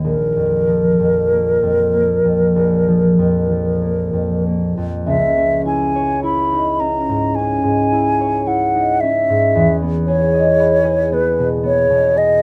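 A mellow, hollow silver concert flute carries the wistful, mysterious melody up front with airy vibrato and tongued notes over a ringing, thumb-plucked concert harp in this rubato impressionist duo fragment, which drifts through C#madd9 at 5.1 s and Emaj7 at 9.6 s in a close, detailed, dry recording.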